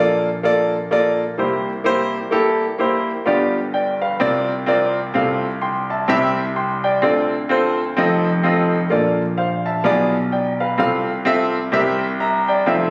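Soulful and jubilant, this gospel passage for solo grand piano moves at 128 BPM in a swung 4/4, drawn from a longer piece. The clear, intimate piano sits up front with audible action noise, spanning F1 to C6 through a progression that opens on Bbmaj7 and winds through G7, Dm7, F7 and Bdim7 before settling on C7. Caught on a phone in a recital hall, it carries a moderate reverb with a 1.4-second decay and a natural, compressed sound.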